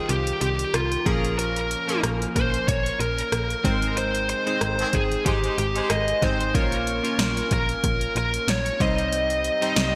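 1980s-style pop at 93 BPM in Bb dorian with a light sixteenth-note swing, urgent and moody, led by a dark, distorted high-gain guitar melody up front with delay, over glossy chorused retro synth keys, a snappy FM bass with a metallic attack and an overdriven deep house drum kit with a deep kick, punchy snare and gated reverb. Distant horn stabs with light vibrato cut in at 4.8 seconds during a band accent, as the chords move from Cm through Bbm and Ab before returning to Cm. The bright digital production sits in a lush hall reverb, and the clip is cut from a longer piece.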